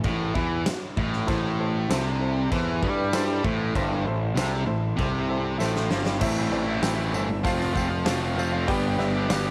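A straight 4/4 classic rock groove drives this brooding, swaggering section cut from a longer piece. A big acoustic kit with a punchy kick, fat snare, hi-hat and crash cymbal rings in a bright stone room, while a sludgy, double-tracked overdriven guitar riff and a fuzzy, picked electric bass sit up front. A jingly tambourine joins in the background at 0.7 s, and a clear, woody upright piano enters at 1.3 s, its slightly detuned, worn tone carrying audible action noise and long sustain. A piano fill and then a drum fill lead into a new section at 6.2 s, where the harmony moves from A minor through F to G. Light reverb and small room ambience surround the whole band.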